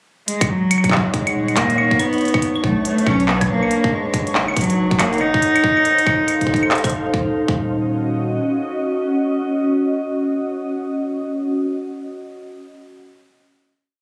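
Glitchy and melancholic, this short IDM piece moves at 140 BPM with a swung 16th feel, cycling through Ebm7, Bm7, Gb6 and F7 before settling on a final Ebm7 chord at 7.1 seconds. Up front, a soft sul tasto cello floats a free melody roughened by 12-bit sampler grit and tape echo. Around it sit a glassy FM pad with ensemble chorus, a broken electronic kick, a glitched kit of clicky hi-hats, claves and handclaps, a round sine sub bass with a skipping syncopated line, and a faint, flickering granular texture holding a high note in the background. The pad lingers alone until 11.0 seconds, and the recording sounds caught on a phone in a room, with club reverb and compression.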